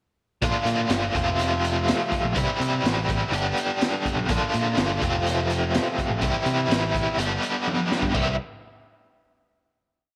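A biting, double-tracked overdriven guitar sits up front with a bright, ringing riff colored by tremolo, while a growling, overdriven picked bass plays a punchy syncopated line and a raw garage drum kit with a high-tuned snare and dark cymbals drives a pop groove. This sunny, swaggering classic rock piece in C mixolydian moves at 125 BPM in a straight 4/4 through a pre-chorus cycling Bb, F, C and G, with a drum fill at 7.7 seconds leading to a final C chord at 8.1 seconds. Moderate spring reverb lends the short piece a sense of space.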